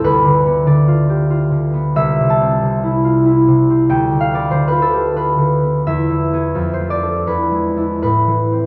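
A solo concert harp opens on a diminished chord over D, its thumb-plucked strings sounding mellow and ringing and placed up front. This short classical fragment in A minor, cut from a longer piece, moves in a gentle, wistful 3/4 with a rubato feel, the tempo drifting between 78 and 97 BPM. The harmony passes from that opening chord to A minor over C by 2.0 seconds, returns to the diminished sound, then steps through E, D minor over F and E7 before settling on A minor at 8.0 seconds. The harp covers a span from C2 up to A5 and plays alone for the full 8.7 seconds. A moderate recital hall reverb surrounds the instrument, while the highs stop at 7.8 kHz for a soft, rounded top.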